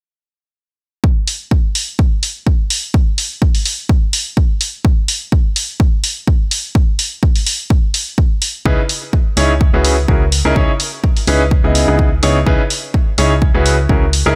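Set in a digital ambience, this energetic, bittersweet piano house excerpt moves at 126 BPM in 4/4 with a light 16th-note swing, centred on C# dorian. A punchy, tape-warm electronic kick opens at 1.0 seconds, joined at 1.3 seconds by a dry, analog-flavoured hi-hat, both sitting up front. At 8.7 seconds a clear, open baby grand piano riff with long sustain, tape echo and sidechain pumping arrives alongside a hollow, dark, organ-like FM bass on C#2, moving through C#m9, F#9sus4/C# and C#madd9 chords.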